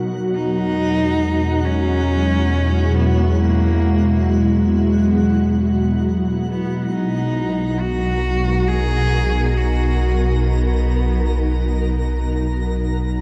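A rich, focused cello carries the melody in this luminous ambient excerpt: a single bowed player with vibrato, entering at 0.3 seconds and stopping at 11.8. The music unfolds in free time in B major over a soft, organ-like pad of sustained chords that sits up front, pure and full-bodied, thickened by ensemble chorus and its own reverb. Beneath it, a round, deep sine sub bass holds the low end, mellow and close. A twinkling granular texture with an octave-up shimmer fades in gradually in the background, sparkling within its own reverb. The harmony moves from Eadd9 to Bmaj7 at 6.9 seconds, and the piece is bathed in a huge, wet ambient reverb with a dark, warm production.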